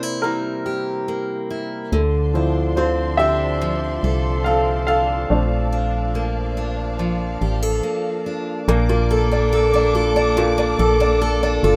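Heartfelt and tender, this pop ballad fragment in straight 4/4 opens with a clear, woody upright piano taking the lead. Beside it, a bright, full-bodied picked steel-string guitar plays arpeggios up front. At 1.9 seconds, a lush bowed string section with vibrato enters on sustained chords, dark in tone with a smooth top. A hollow, organ-like FM bass arrives with it, its fast-attack, decaying notes placed near the front. The piano's featured passage runs until 8.7 seconds, with a short break just before a new section that carries to the end of the cut, while the harmony moves from C7 to Dm7 and then Bbmaj7. Light reverb lends the rough home-demo mix a modest sense of space.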